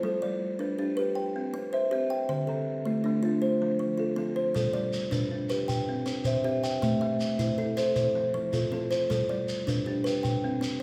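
A bright, woody kalimba rings out close and up front in a rippling, warm southern African traditional interlocking cycle, its arpeggios woven with those of a hollow, buzzing second kalimba, while a grainy, mellow shekere joins at 4.6 seconds, all set in a reverberant recital hall in this short passage cut from a longer piece.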